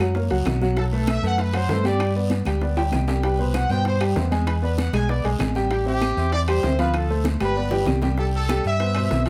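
A moderately reverberant studio sound frames this passionate, danceable salsa excerpt, with a clear, woody, slightly detuned upright piano and a dark, punchy fingered electric bass up front. Bright, high-tuned congas and ringing metal-shell timbales sit in the background, very quiet round, low-tuned bongos and small-room claves add texture alongside a raspy, saturated guiro, and a trumpet section with light vibrato carries the melody. Drum fills arrive at 2.8 and 7.3 seconds, and the harmony moves through Cmaj7, E7, Am7 and Dm7 before a new section opens at 8.2 seconds.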